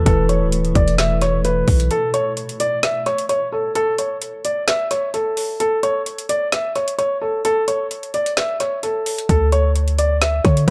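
An echo-soaked mix with a light reverb opens this excerpt from a longer half-time trap and hip hop track, and its mood is wistful yet triumphant. A dark, intimate grand piano carries the melody up front, its smooth vintage tone filtered and trailed by tape echo, with the soft clatter of its action audible. Under it, a mellow tine electric piano heard through its built-in speakers and a cloudy, blurred granular pad in the background hold a suspended chord alongside a deep, boomy 808-style bass. At 1.9 seconds the electric piano, pad and bass drop away, leaving the piano and the electronic trap kit, with its hard-clipped kick, woody snare and metallic hats sent through tape echo, to carry a long break. The kick is muted from 8.4 seconds, and at 9.3 seconds the sine-based 808 returns on a bare power chord, its fast attack decaying beneath the piano.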